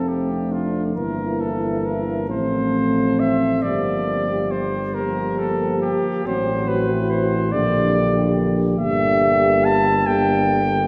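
A warm flugelhorn sings a yearning, elegiac hymn-like melody up front from the very first moment, with a French horn section carrying a second line in light vibrato, while a euphonium and a more distant, roomy trombone sit in the background and a soft-attacked tuba anchors the bass. This classical brass band passage moves slowly and freely at 46 BPM in 6/8, tuned to A4 = 444 Hz, its harmony drifting from F through diminished and minor-seventh colours such as Gm7 and Em7b5/G. The mellow ensemble is heard from further back in a wet church reverb with a long, dark tail, and the 10.9-second fragment is cut from a longer piece.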